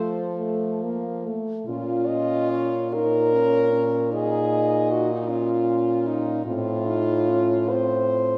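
Four French horns sound together from the opening moment in this brief fragment of a lyrical classical piece, its elegiac, yearning mood carried in a 6/8 with a free, rubato feel. The melody rides on a clear-toned horn that sits in the background, while a mellow, close-miked horn playing the second line stands up front just beneath it. A second mellow horn fills in the accompaniment, and the lowest horn anchors the bass with a warm tone. The harmony moves from an F chord to B-flat minor at 1.7 s, and an F7 over A arrives at 6.5 s. A reverberant recital hall surrounds the quartet, giving each chord a lingering, wet halo.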